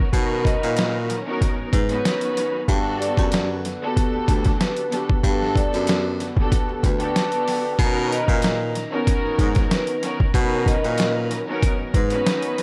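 This boom-bap hip-hop excerpt moves at 94 BPM in B major with a lightly swung 16th feel and a confident, nostalgic mood, as a gritty, overdriven sampler-style drum kit with a thumpy kick sits up front beside a breathy, subtone baritone saxophone carrying the bass with scooped notes, while a dark, con sordino string section colored by cassette tape accompanies and a very quiet, fat tonewheel organ through a slow rotary speaker sustains the Bmaj7 and Gmaj7 harmony, and a mellow soft-mallet vibraphone plays a tape-echoed melody in the background from 0.4 s, all placed in an echo-heavy small-room mix.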